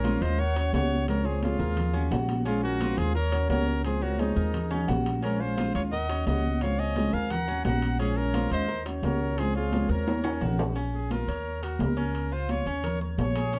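A dark, warm studio production with moderate reverb frames this short cut from a longer Cuban son and guajira piece, danceable and brisk at 174 BPM in a straight 4/4. The upright bass sits up front, woody and thumpy with gut strings plucked pizzicato, while a fingerpicked nylon-string guitar adds small, fresh-stringed accompaniment with audible finger squeak until 10.8 seconds. The Cuban tres spins metallic, picked arpeggios on its doubled strings, and high-tuned congas with a thin skin sound distant in a large room in the background, alongside ringing metal-shell timbales. A bright trumpet with vibrato carries the melody in a present, pop-style voice, joined by a reedy silver concert flute on a soft-attacked second line in the background until 10.6 seconds. The harmony circles Ebm7, Dbmaj7 and Bbm7, and after a drum fill the trumpet takes a solo from 10.8 seconds over Bbm, Eb5 and Db.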